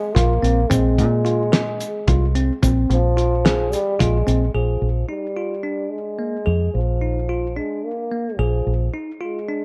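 Set in a straight 7/8 at 218 BPM counted in eighths, this intricate, driving progressive instrumental in B-flat mixolydian moves from a Bb7 chord with its third omitted to an Fm/Bb vamp and then settles on Bb7 for its second half. A lo-fi, cloth-damped drum kit with a fat snare and tight kick, muffled and gritty, sits up front beside a round, dark fingered electric bass, while a grainy egg shaker ticks in the background; both drums and shaker drop out at 4.4 seconds. Over this, a bell-like tine electric piano spins clean, bright arpeggios, and a cup-muted trombone carries a soft, breathy, veiled second line with scooped notes, all in a small room with light reverb, cut from a longer piece.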